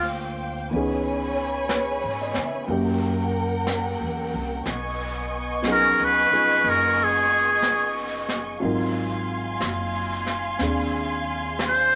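A buzzy, metal-muted trumpet with vibrato sings the melody of this intimate, late-night jazz ballad at 61 BPM in swung 4/4, up front from the start over lush bowed strings, a dark, slightly detuned upright piano and woody pizzicato upright bass, with brushed drums joining at 0.7 seconds, in a moderate studio reverb, as the chords move from Bb69 through Dbm7, Gb7b9 and B69 to Ab13 in this short passage cut from a longer piece.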